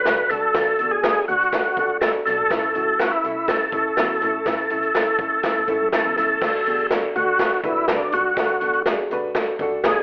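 Uptempo 1960s-style soul with a joyful, danceable drive, this excerpt puts a gritty, overdriven tonewheel organ up front on the melody, its key click colored by chorus vibrato and a slow rotary speaker, while a woody, boxy, slightly detuned upright piano supplies accompaniment. A swinging big-band drum kit sits forward with dark cymbals and a boomy kick, and a soft-attack bowed double bass floats in the background. Light reverb and a telephone-like sound color the whole mix, with the harmony moving from D to A and back to D at 6.4 seconds.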